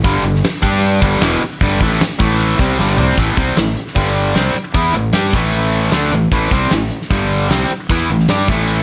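Hard rock with a driving, aggressive edge, this short excerpt cut from a longer piece runs in a straight 4/4 from its first beat. An overdriven electric guitar carries the riff throughout, its bright, picked tone double-tracked and sitting up front. Beneath it, a fingered electric bass with fuzz and overdrive adds a warm, punchy, amped low end. A huge arena drum kit, recorded in a big, airy room with a polished sheen, pairs a fat snare with a punchy kick alongside hi-hat and toms. The harmony moves between G5, A5 and A minor, and a drum fill at 2.8 seconds leads into a new section at 3.2 seconds, all set in light reverb.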